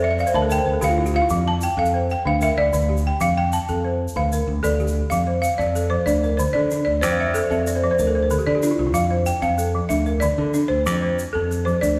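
This West African traditional piece for balafon, bass and shaker is joyful and flowing in a steady 12/8. Two balafons struck with rubber mallets sit up front. One carries the melody high in its range with a dark, smooth, buzzing tone, while the other spreads arpeggios across a broader span with a woody, full, close-miked sound. A balafon takes a solo over the first 5.1 seconds, and balafon fills appear at the start and again around 7.0 seconds, as the harmony moves among D minor, F, Bb and C chords. A bright fingered electric bass anchors the low end with a punchy, direct attack, and a grainy egg shaker adds soft texture from 0.2 seconds. The balafons and shaker sound dry within a recital hall's lush reverb, and the clip is cut from a longer piece.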